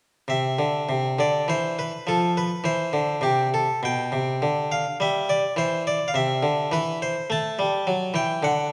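In a 3/4 at about 103 BPM, the beats fall unevenly with a free rubato, lending this serene, radiant baroque-style suite movement in C major a gently breathing lilt. A lone French-style harpsichord, bright and plucked on a single set of strings, sits up front with a mid-forward presence, ranging from B2 to A5 as the harmony moves from C through Dm7 and G/B back to C before closing on an open A5. A moderate concert-hall reverb and a dark production surround the instrument throughout this brief excerpt, which runs from 0.3 to 8.7 seconds as a fragment of a longer piece.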